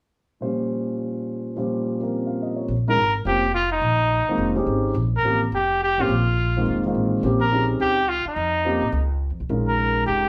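Modal jazz in Bb dorian at a brisk 211 BPM in 4/4, with a swung eighth-note feel and an intense, searching mood, cut from a longer piece. A dark, mellow baby grand piano opens alone at 0.4 seconds on a Bbm69 chord, its long sustain filling the space as accompaniment. At 2.7 seconds a woody, growly upright bass joins with pizzicato playing on steel strings, and just after, at 2.9 seconds, a trumpet takes the lead with a vintage, jazz-style solo full of vibrato and a warm tone. The trumpet sits slightly above the others in level, while piano, bass and horn all stay up front in the mix. The band plays live together in one room, wrapped in a wet studio reverb with a 0.8-second decay.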